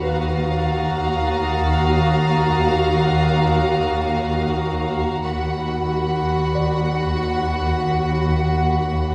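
A swarming, detuned drone hangs low beneath this ominous, mysterious suspense cue from a film score, unfolding in free time over a single Ebmadd9 harmony, cut from a longer piece. Bowed string sections sustain with vibrato, the viola up front, the violins carrying a smooth melody and second line, a high violin texture dropping out at 4.9 s, and cellos and portamento double basses anchoring the bass. A polished grand piano adds a short-sustain texture in the background, and the whole ensemble sits further back in a wet scoring-stage reverb.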